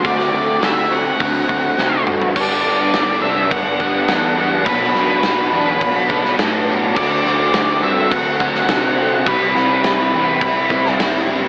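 A straight 4/4 pulse at 104 BPM drives this hazy, blissful shoegaze and dream pop rock excerpt in G major, where a big, mid-forward acoustic drum kit with a tight kick and rolled-off top sits up front beside a bright, double-tracked crunchy guitar riff thickened by ensemble chorus, a growling overdriven bass moves underneath, and a fuzzy octave lead guitar carries the melody through distortion and slapback echo, with a drum fill at 1.8 seconds leading into a new section that opens on Gmaj7 at 2.4 seconds, the mix framed by an AM radio sound and light small-room reverb.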